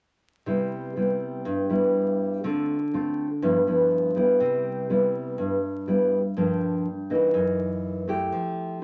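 A straight 4/4 pulse at 122 BPM carries this short, sunny bossa nova fragment in C major, lifted from a longer piece and tuned to A4 = 439 Hz. A single nylon-string guitar plays alone from 0.5 to 8.8 seconds, thumb-plucked in a classical manner and placed up front, its tone acoustic and warm as it spans F#2 to G4. The romantic harmony opens on Cmaj7, moving through Dm7 and G6, then returns to Cmaj7 at 4.4 seconds before drifting through Gm7 and F#6 to settle on a closing Fmaj9. A wet studio reverb with a short 0.5-second decay surrounds the instrument, and a layer of vinyl crackle runs beneath the sound.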